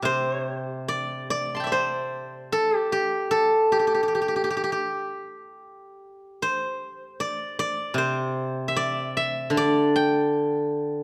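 A solo steel-string zither, bright and silvery under fingerpicks, rings out up front in a moderate recital-hall reverb throughout this 11-second passage cut from a longer piece of pastoral, elegant Chinese traditional music, moving in a loose, rubato 4/4 around 76 BPM in the G zhi mode and spanning C3 to C6.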